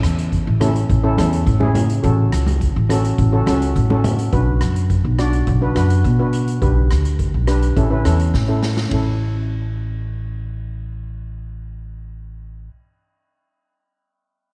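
Calypso with a carefree, bouncy mood, built on mellow, shimmering steel pan accompaniment struck with soft rubber sticks and a growly, woody pizzicato upright bass up front, while a street-band drum kit with a boomy kick and dark cymbals plays a fill before stopping at 9.0 seconds, and distant, ringing, soft-handed congas sit in the background from 0.6 to 4.2 seconds, all within light reverb and small room ambience.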